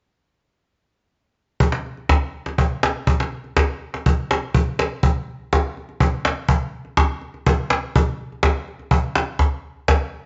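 A woody, up-front cajon with faint snares carries this short folk fragment on its own, entering at 1.6 s and playing in a three-beat metre until 10.0 s, with a new section beginning around 4.5 s. Its acoustic, vintage tone sounds band-limited, set in a moderate studio reverb and a dark, warm production that gives the passage a warm, peaceful mood.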